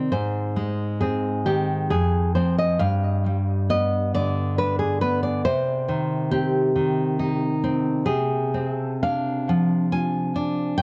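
This short cassette-tape recording places a single nylon-string guitar up front in a small room with a moderate, brief reverb, its warm, full-bodied, deep classical tone carrying a trail of analog delay. It is a romantic piece for solo classical guitar, passionate and intimate, cut from a longer work and lasting about 10.8 seconds. The tempo sits near 68 BPM in 3/4, but the beats are uneven and the phrasing breathes with rubato. Fingerpicked, the guitar ranges from F2 up to Ab5, and a finger squeak adds a close, human texture. The harmony moves from Ab through Fm and G7 to Cm at 5.5 seconds, settling at the end on Dm7b5 over C.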